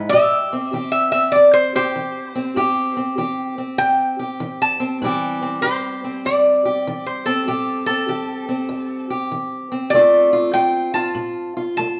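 Swung eighths in 4/4 carry this smoky, soulful acoustic country blues duo, cut from a longer piece, where a bright, nasal lap resonator guitar, played slide with a steel bar and fingerpicks, sings the melody up front from 0.1 s over a dark, boxy parlour fingerpicked steel-string acoustic guitar, the two playing live in one room under a wet, large studio reverb as the Am7 harmony shifts to Dm7 at 9.9 s.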